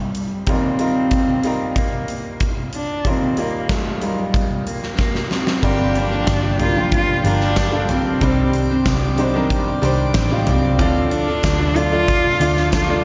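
A dark, bowed cello carries the melody over bright upright piano and a huge arena drum kit with a punchy kick and fat snare in this uplifting, anthemic piano-driven pop piece at 93 BPM, where after a drum fill the arrangement fills out at 5.6 seconds with majestic full pipe organ chords and a picked steel-string acoustic guitar riff in the background, a round, foam-muted electric bass, and a very quiet jingly tambourine from 6.3 seconds, moving from Ebadd9 through Gm7 and Cmadd9 to Dm in a small room with light reverb and slapback echo on the cello and piano.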